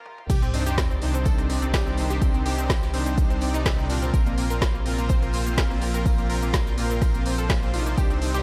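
Driving and bittersweet, this progressive house excerpt in C minor runs at 125 BPM and drops in at 0.3 seconds, where an overdriven, up-front electronic kick and a very quiet, airy big-band kit with tambourine join a deep house kit with a woody snare and smooth hats, in since 0.1 seconds, and a faint string section already holding soft, floating chords. A round, mellow analog bass and a bright, detuned analog pluck with chorus and delay pump under sidechain, while a smooth supersaw adds sustained stabs over chords moving from Cmadd9 to Bbsus2. A very quiet sub drop ends by 2.2 seconds, and from 2.7 seconds a glassy harmonics texture drifts high above, all set in light reverb with a dark production.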